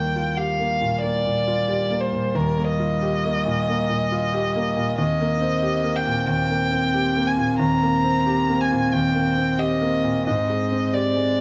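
A dark, woody solo violin sings the melody with vibrato over a cello's soft-attack, sul tasto second line and a clear, natural grand piano accompaniment from the first moment of this tender, intimate neoclassical fragment in Eb major, which moves rubato around 91 BPM in 4/4 through Ebadd9, Cm7/Eb and Abmaj7 in a moderate large-studio reverb.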